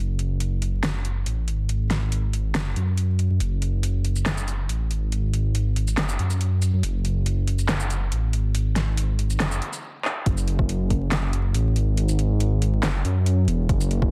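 A deep, rumbling detuned saw bass sits up front through this brooding, meditative deep dubstep excerpt in F# minor at 140 BPM in half-time, joined from 0.2 s by an overdriven deep house drum kit of fat snare, handclaps, metallic hats and shaker, building until a brief stop and drum fill give way at 10.3 s to a drop where a punchy overdriven electronic kick enters, all set in light digital ambience with a dense, heavily limited master and vinyl crackle.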